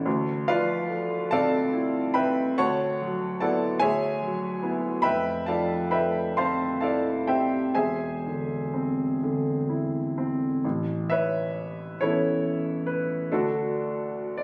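This recording has the roomy sound of a phone capturing a performance in the room, with club-like reverb and a moderate reverb tail of about 1.7 seconds blooming around each note. It is a serene, dreamy piece of impressionist classical music for solo piano, set in a lilting 6/8 and played with free, rubato timing. The baby grand sits up front and sounds natural and clear, ranging from a deep E1 in the bass up to C#6 across its brief 14.4 seconds, which are cut from a longer work. The harmony drifts through rich extended chords, moving from Dm9 and Bm11/D through Fmaj7 to a hovering Eaug7. At 10.6 seconds a new passage opens on Aadd9 before settling on D.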